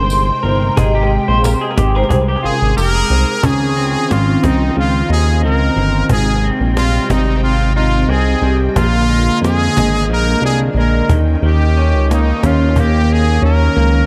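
A brilliant, chorused trumpet carries the melody from 2.4 s in this sunny, laid-back bedroom-pop piece with a light swing, overlapping the clean, slightly broken-up lo-fi electric guitar solo that opens it and runs until 3.4 s over a glossy, nasal synth bass up front, vintage string-machine violas with phaser in the background, a woody cajon played with soft hands, and a jingly tambourine and dark, ringing vibraphone that stop by 3.3 s, with dub echo trailing the trumpet, guitar, cajon and vibraphone.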